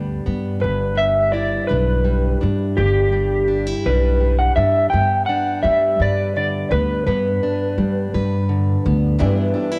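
A slow, straight 6/8 sway at 56 dotted-quarter beats per minute carries this uplifting, nostalgic folk piece in G major, cut from a longer work and moving gently between G and Em7/G. A fingerpicked, plugged-in steel-string acoustic guitar provides the accompaniment with a concert-hall character and cassette-tape coloring, while a woody, thumpy pizzicato upright bass sits up front, its dark tone thickened by tube saturation. From 0.6 to 8.1 seconds, an electric guitar through a small old amp carries the melody, fingered and slightly broken-up, with a shadowy harmonic tremolo. At 9.2 seconds, a felt-muted upright piano joins with a soft, intimate, short-sustained sound and audible action noise, alongside a picked steel-string acoustic guitar that is warm, close and auditorium-like. The whole home cassette recording is lightly touched by studio reverb, giving it a homespun, memory-tinged glow.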